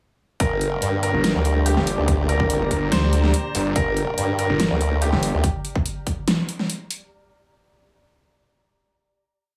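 A half-time 4/4 beat at 143 BPM drives this heavy, menacing wobble dubstep drop in G minor, with a punchy overdriven electronic kick and a dubstep kit of huge snare and bright hats sitting up front, the kit carrying on alone until 7.0 s. Two up-front basses dominate: a formant-sweep wobble bass with saturated, chorused tone playing modulated phrases of changing wobble speed, and a snarling, detuned distorted saw bass entering at 1.1 s with chopped, growling phrases answering the other bass. Above them, a clear, intimate baby grand piano repeats a riff melody through vintage 12-bit grit and tape echo, while a lush, warbling unison pad holds sustained chords and an ethereal, airy pad with shifting chords and built-in reverb joins at 1.4 s, both pumping in the background of a small, lightly reverberant room.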